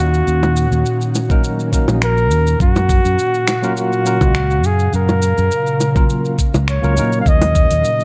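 A relaxed sunset chillout piece at 103 BPM opens with a warm, vibrato-rich flugelhorn melody up front, carrying digital delay, over an ethereal, detuned pad of sustained, slow-attack chords with ensemble chorus. A punchy fingered electric bass, a smooth R&B kit of finger snaps, metallic hi-hats and shaker, and round, low-tuned bongos played with soft hands come in alongside them almost at once. At 1.3 seconds a knocking electronic kick and a worn, slightly out-of-tune tine electric piano enter, the piano lightly overdriven with vintage 12-bit sampler grit, as the chords move from Ebm7 to Gbmaj7 and back in a dark production with light reverb.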